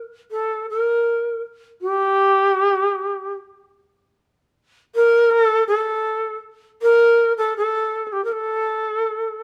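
Austere and solitary, this brief fragment of Japanese traditional chamber music features a lone end-blown bamboo shakuhachi, airy and reedy with tongued attacks, chiff and vibrato, moving freely in rubato around 73-83 BPM in 2/4 within a narrow G4 to Bb4 range, shifting into a new section at 3.8 s and heard up close and in fine detail under light reverb.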